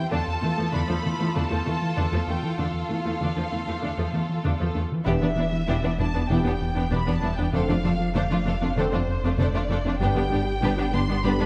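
A smooth, gliding synth bass stands out from the first moment, its sawtooth-and-triangle tone sliding between notes with portamento and vibrato as it carries the riff beneath this tense, vast excerpt of a hybrid orchestral and electronic film score at 97 BPM in straight 4/4. Above it, a dark, expressive violin section sings the melody while a second, richer violin section plays a supporting line, joined almost at once by an intense viola section, a cello section sitting in the background, and a very quiet, tight sequenced synth driving detuned, chorused arpeggios. At 5.1 seconds the sound deepens as a mellow French horn section and a very quiet trombone section add sustained chords, a saturated sub bass brings thick low weight, and a distant, soft-attacked double bass section joins until 11.3 seconds. The harmony moves from Dm/E through Em7 and Dm7/F before arriving on G. A moderate scoring stage reverb gives the lush bowed strings and brass a spacious, cinematic depth.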